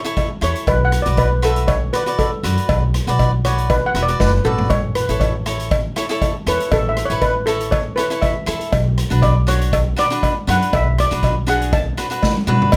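A shimmering steel pan, struck with hard rubber sticks and set in a boxy small room, carries the melody as a solo across this bouncy, festive calypso fragment at 119 BPM in a lightly swung 4/4. Crisp, bright picked cavaquinho and a woody pizzicato upright bass sitting up front move between A and B minor, while a close, dry metallic cowbell joins in. An airy, polished street-band drum kit with a boomy kick and dark cymbals drives the groove and adds fills at 4.2 and 12.2 seconds.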